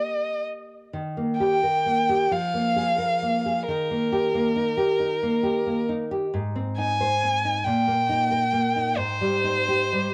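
A rich, bowed violin carries the melody up front, its single player expressive with vibrato and portamento, in this solemn, yearning romantic duo in Eb major at 45 BPM in 6/8, with uneven beats and free rubato. Beneath it, a dark, full-bodied nylon-string guitar is fingerpicked in deep classical style, also up front, with a cassette-tape coloring as the harmony moves through Eb, Ab and Eb/Bb and reaches Abmaj7 at 9.0 seconds. Light reverb and small room ambience surround this home recording, and the passage is cut from a longer piece.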